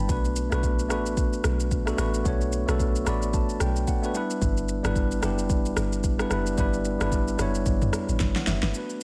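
A clean tine electric piano sits up front in this late-night amapiano excerpt, its chords voiced from G3 up to B5 and played through its built-in speakers, with a short fill from 2.8 to 4.4 seconds. At 111 BPM in 4/4 with a lazy sixteenth-note swing, the groove feels hypnotic, moving from Bm7 to G6. Underneath, a deep log drum bass sits between F#1 and B1, its round, dark FM tone carrying a noise layer, a fast attack and a decaying tail. The electronic deep house kit is layered and up front, with a deep kick, fat snare, rim click, shaker and toms, closing on a drum fill at 8.2 seconds. A digital ambience wraps the mix, and the whole passage plays as a drop cut from a longer piece.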